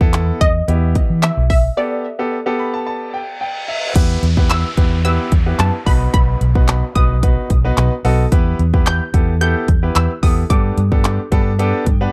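A dry, close 1970s-style studio sound frames this driving, energetic dance-pop excerpt, led by an up-front house drum kit with a punchy kick, handclaps, hi-hat and crash, beside a dark, round, foam-muted electric bass that pumps with sidechain compression. A polished concert grand piano also pumps through the accompaniment and adds fills, while a lush, detuned sawtooth pluck carries the melody through tape echo. A break opens at 1.8 s, an electronic reverse cymbal and downlifter enter at 3.1 s, and the second section lands at 4.0 s.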